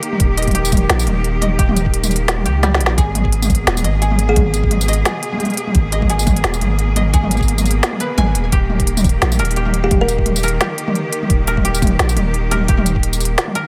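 Bright, lush bowed cello chords with vintage sampler grit and sidechain pumping open this tense, heavy half-time drum and bass excerpt at 173 BPM in G# harmonic minor, alongside mellow fingerpicked koto arpeggios through digital delay and an up-front overdriven electronic kit of woody snare, smooth hats, tambourine and toms, while a deep sine 808-style bass and a knocking, tape-warm kick enter at 0.2 s, a drum fill lands at 2.6 s, and a short, hollow kalimba melody with dub echo surfaces briefly at 4.3 s and 9.8 s.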